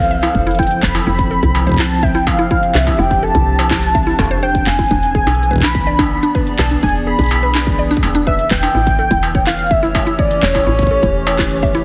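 A velvety, detuned synth lead carries the melody over a warbling, lo-fi pad and a round, woody FM bass from the start of this wistful, glitchy IDM excerpt in F lydian at 125 BPM, its sound roughened by vintage 12-bit sampler grit and trailed by digital delay. A nasal, mallet-like FM pluck adds chorused, delayed arpeggios, while an industrial kit of handclaps, smooth hats and struck metal enters within the first second, followed moments later by a distorted electronic kick. The chords move from Fmaj7 to E7 at 4.9 seconds and A7 at 8.7 seconds, all set in a lush hall reverb with a heavily compressed, radio-like finish.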